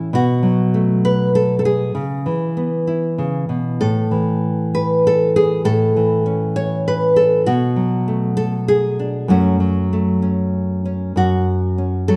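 A woody, up-front nylon-string guitar, its old strings giving a warm tone, rings through a moderate concert hall reverb in this melancholic, wistful folk excerpt, fingerpicked in a classical manner in 3/4 with a straight feel, moving from B5 through C#m7, A and Bm7 to F#m across a range from F#2 to C#5, before the brief closing section begins at 11.2 seconds.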